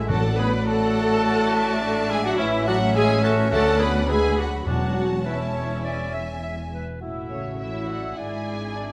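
A spirited, graceful classical-period movement for symphony orchestra at a quick 104 BPM in A major, where a dark, woody studio violin section carries the melody over second lines from mellow flutes, a vibrato-laden oboe and a lush symphonic violin section, with a smooth viola section and bassoon accompanying, background French horns holding sustained chords, rich cellos and distant double basses anchoring the bass, timpani sounding at 0.1 and 4.7 seconds, a clear close-miked clarinet entering at 5.3 seconds and a bright, tight trumpet section adding stabs from 7.0 seconds, all set in a moderate scoring-stage reverb captured by close, detailed microphones.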